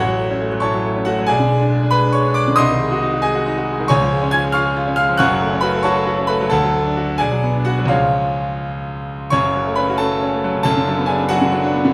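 A concert grand sits up front in a moderate scoring-stage reverb, its tone brilliant and open, with deep bass and long sustain ringing into the space. This short excerpt from a classical virtuoso piano study is passionate and stormy, moving in a rubato 6/8 at around 91 dotted-quarter beats per minute in F# minor. The solo piano spans a broad range from F#1 to G#6, filling both the low register and the high treble. The harmony opens on F# minor over A and presses through diminished and dominant colors toward C#, then turns briefly to D and a half-diminished chord before returning to C#. At 9.3 seconds a new section settles back on F# minor and closes on B minor over F#, where the fragment breaks off at 11.9 seconds.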